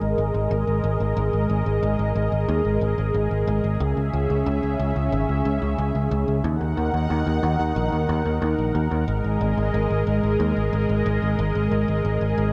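A light reverb and digital ambience frame this short synthwave passage, cut from a longer piece and moving at 91 BPM in a straight 4/4. The mood is moody and driving, built from two parts that play together for the whole 12.5 seconds. A lush unison pad holds sustained chords from C#3 to F#5, its thick, detuned sawtooth voices carrying an airy noise layer and a slow attack, colored by chorus and phaser and placed up front. Beneath it, a picked electric bass sits between G#1 and D#2 with a dark, round, direct tone that is also up front. The harmony moves from G#sus2 to C#m at 3.8 seconds, then D#m, before returning to G#sus2 at 9.1 seconds.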